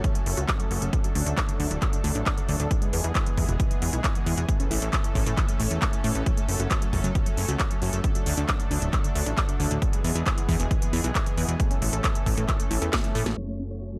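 Uplifting trance in F# minor at 135 BPM, this driving, euphoric cut cycles through F#m, D, E and A as a lush, thick, nasal unison pad holds chords, a detuned background pluck with a moving notch spins filter-swept arpeggios and a punchy, funky analog bass joins at 0.3 seconds, all three pumping against the kick. A dry, up-front electronic kick anchors a layered techno kit of cracking snare, smooth hi-hats, handclaps and crash cymbal inside a digital ambience, and a drum fill leads into a band accent at 13.3 seconds. At 13.4 seconds a huge, airy supersaw lead arrives on a single C#5 note behind a low-pass filter, joined by a barely audible downlifter.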